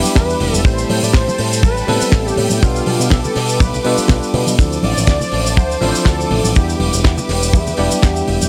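A bell-like tine electric piano with subtle chorus and digital delay, a lush bowed string section in the background, a punchy picked bass shaped by an envelope filter and tube saturation, and close congas and maracas open this sleek, sensual nu-disco excerpt at 122 BPM in D dorian, with a light 16th-note swing over Em7, Am7, G7/B and Dm7. A damped 70s kit with a fat snare, hi-hat and shaker joins at 0.1 seconds, and at 0.2 seconds a thick, detuned sawtooth unison lead with analog chorus and tape echo enters alongside a tight, up-front kick drum. The sound is dry and close, with sidechain pumping on the keys and strings.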